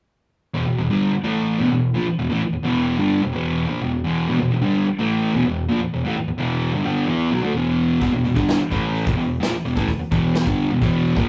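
A rough rehearsal-room recording with a wet studio reverb, this excerpt from a longer garage rock piece has a rowdy, raw character. At 128 BPM in a straight 4/4, a double-tracked fuzz guitar opens alone at 0.5 seconds, playing a distorted, picked riff on an E5 chord that ranges from E2 to E4. The guitar sits up front with a warm electric tone. At 8.0 seconds a soft brush drum kit enters with hi-hat, a tight kick and a medium-tuned snare, sounding acoustic and natural in a small room. The drums sit lower in the mix than the guitar, and the instruments are tuned to A4 = 441 Hz.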